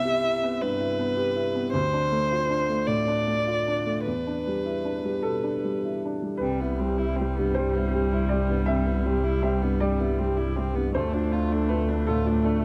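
Longing and reflective, this neoclassical piece for piano and strings moves slowly at 53 BPM in a rubato 6/8, tuned to A4 = 442 Hz and cut from a longer work. A clear, woody upright piano sits up front, its open sound carrying the accompaniment from low bass notes into the treble, while a single muted violin, bowed con sordino with vibrato, sings a veiled, dark melody close beside it. At 6.4 seconds the phrase begins again, and a muted viola joins with a soft attack, a smooth top and light vibrato. A muted double bass also enters there, up front, bowed with vibrato and portamento. The harmony drifts through Cmaj7, Dm and Em7 before returning to Cmaj7 and Dm, all caught by close, detailed microphones in a light reverb.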